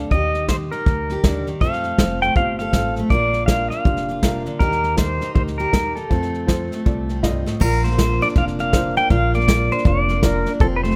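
A bright, full-bodied picked acoustic guitar and a thumpy, woody pizzicato upright bass open this down-home, heartfelt, swung stretch of honky-tonk and classic country. They are joined almost at once by a twangy, clean pedal steel carrying the melody up front with fingerpicks, slide and volume swells, over a tight, natural brush kit. A warm upright piano enters at 1.6 seconds and plays a fill from 7.0 seconds, and a drum fill then ushers in a new section at 7.6 seconds, all set in light reverb with close, detailed miking in this cut from a longer piece.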